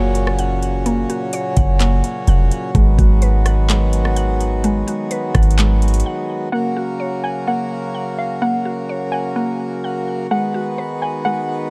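A boomy, deep 808-style bass sits up front in this blissful, dreamy cloud-rap excerpt, holding its low register in F# major at a half-time 127 BPM before it drops out at 6.0 seconds. A reedy, breathing pedal harmonium sustains chords throughout, close and full, while a woody, percussive mallet-like synth pluck spins arpeggios washed in chorus, low-pass filtering and digital delay. A smooth R&B drum kit of knocking kick, metallic hi-hats, handclaps and rim clicks runs alongside the bass until a brief break at 6.1 seconds. From 6.5 seconds a soft, round pluck carries a gentle high melody through the same chorus, filter and delay treatment, floating over the harmonium and arpeggios as the harmony moves between F# and G#m7. The production is dark and dry, with little reverb.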